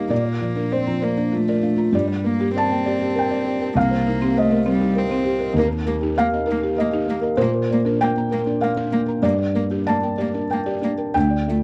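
A felt-muted upright piano, a cello and a marimba begin together in this fragile, melancholic fragment of neoclassical music for piano and strings, cut from a longer piece and moving in a loosely breathing three-time with a rubato feel. The piano carries the accompaniment up front, its thick felt giving a dark, mellow, intimate tone, with the soft clatter of its action audible beneath the notes. Close beside it, a single cellist plays a second line sul tasto, the bow airy and the attack soft, with a light vibrato. Farther back, a marimba struck with soft mallets spins arpeggios on hardwood bars, round and woody with a faint buzz, and a slapback echo trails each note. The harmony moves through Bbadd9, Gm, Cm7 and Eb before returning to Bbadd9 and settling on Gm at 9.2 seconds. The sound is dry and close, like a small-room 1970s studio recording.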